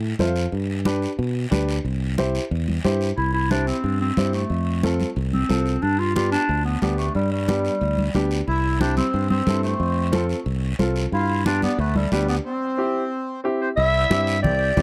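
A straight 4/4 cumbia pulse at 181 BPM is carried by damped, thick-skinned congas, a raspy guiro and a growly, up-front fingered electric bass, with a clear, woody upright piano filling out the C major chords in this joyful, danceable excerpt. At 3.2 seconds a gritty clarinet takes the lead with scooped notes, light vibrato and tape echo, and a reedy, full accordion joins as a second line at 8.5 seconds before a break at 12.4 seconds. The sound is a dry, close 1970s-style studio recording with light reverb.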